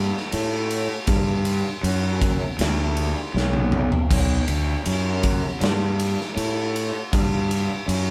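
A growly, overdriven fuzz bass played with the fingers sits up front in this brooding, sludgy stoner and doom metal excerpt, joined at 0.2 s by a big acoustic rock kit with a punchy kick, medium-tuned snare, bright cymbals and toms, with a drum fill from 3.3 to 4.1 seconds, the band playing live together in one room under moderate studio reverb.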